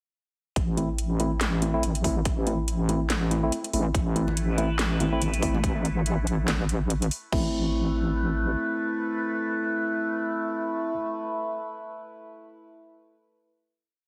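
A deep, saturated wobble bass sits up front in this heavy, cavernous deep dubstep piece in A minor at 142 BPM, its modulated phrases shifting wobble speed over a swung half-time groove from an overdriven, punchy electronic kick and a garage kit of cracking snare, metallic hats and crash. A mellow tine electric piano places off-beat chord stabs through dub echo, while a bright, resonant drone with moving overtones enters at 4.2 seconds and congas echo briefly in the background. After the drums stop at 7.4 seconds, the piano and drone carry the final chord in a heavily compressed, radio-like mix.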